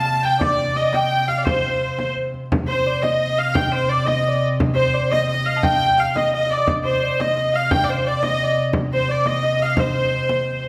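Driving and mysterious, this medieval dance excerpt in C dorian moves at 115 BPM in a straight 6/8, with a biting, earthy hurdy-gurdy carrying the melody up front while a focused, boxy fiddle with light vibrato and a mellow, thumb-plucked concert harp trace second lines in the background. Beneath them a dark, woody viola da gamba holds a ringing drone on C3, and a deep frame drum, close and dry, joins at 0.2 s. The recording sits in a wet recital hall reverb, and after a brief opening section a new section begins at 2.5 s.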